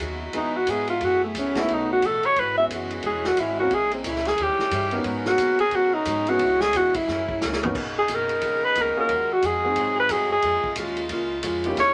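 A moderate studio reverb gives this short cut from a longer big band swing piece a natural sense of space, with a brassy, dramatic mood at a brisk 178 BPM in 4/4 and a medium swing on the eighth notes. Up front, a forceful alto saxophone carries the melody as a solo from 0.4 seconds, its tone smooth on top and colored by vibrato. Behind it, a bright saxophone section holds sustained chords with light vibrato, while a picked archtop guitar with old strings sits boxy and woody in the background, and a grand piano adds mellow accompaniment. A thumpy upright bass on gut strings and a vintage drum kit with dark cymbals, a punchy kick and a rolled-off top drive the groove, the drums marking the turn into the second phrase with a fill at 7.4 seconds. The harmony moves through rich jazz chords such as C#m11, E69 and D#7b9 before settling on Bmaj9 and closing on C#6.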